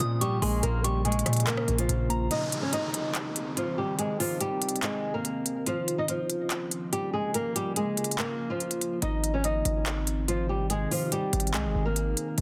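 Triumphant yet dreamy, this half-time trap excerpt at 143 BPM in Ab major sets an up-front, fingerpicked flamenco guitar melody with delay over a deep, moody ambient pad and crisp electronic drums with handclaps and rim clicks, while a pure FM bell and muted, felt-like synth keys colour the opening until 2.3 seconds, a downlifter sweeps through the first part of the break from 2.3 to 5.7 seconds, and the punchy 808-style bass drops out at 2.3 seconds and returns hard at 9.0 seconds in a dense, heavily limited mix.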